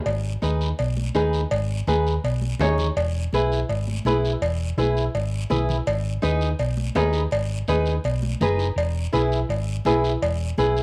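Passionate and fiery, this short cumbia excerpt in G# minor moves at 165 BPM over G#m and E chords, with a dark, round hollow-body electric bass and a fingerpicked flamenco guitar, its cassette-tinged tone showing finger squeak, sitting up front, while ringing metal-shell cowbell and timbales, a raspy guiro and damped, high-tuned congas in the background fill out the percussion in a lightly reverberant home cassette recording.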